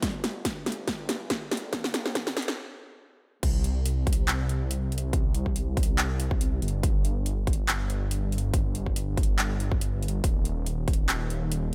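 This future bass clip opens on a drum fill from the big-room dance kit and the punchy electronic kick, with the detuned saw bass already sounding beneath them as the build-up gathers. The mood is dreamy and bittersweet, set at 141 BPM in 4/4 with a half-time feel and a light swing on the sixteenths. At 2.6 seconds the fill gives way to a brief stop, and at 3.4 seconds the drop arrives and carries through to the end of the cut. The bass is thick and lush, a saturated unison sawtooth tone with a mellow sine body, a fast attack and long sustain, moving between Eb1 and C2 with chorus, a high-pass filter and sidechain pumping. The kit brings a huge snare, metallic hi-hats, handclaps and crash cymbal, layered and re-recorded in a small room alongside the kick. Every part sits up front in a dry mix with little reverb.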